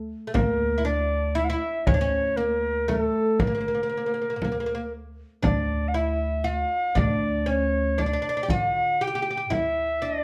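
In a straight 10/8 at 118 eighth-note beats per minute, a deep frame drum played with soft hands joins a thumpy, pizzicato upright bass on gut strings, the bass sounding first at 0.0 seconds and the others entering at 0.3 seconds. Over this passionate Arabic maqam groove in D maqam suznak, a mellow alto recorder carries the melody with a pure, straight tone and a crisp chiff, while a fretless, plectrum-plucked oud with double strings adds a woody second line. The ensemble plays live together in one room with light reverb, in a short passage cut from a longer piece where the drum drops out at 9.7 seconds just before the end.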